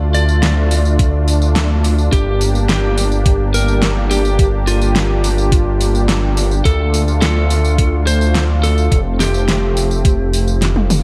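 Synthwave at 106 BPM in G minor with a nostalgic, cinematic mood, this excerpt from a longer piece sets a lightly driven, slightly broken-up lead guitar with tape echo over a detuned, chorused analog pad, a glossy pulse-wave synth bass pumping up front, a layered pop kit with fat snare, metallic hats, tambourine and gated reverb, and a thumpy, overdriven electronic kick entering at 1.0 seconds, moving through Dm, Gm and F before a drum fill at 10.6 seconds.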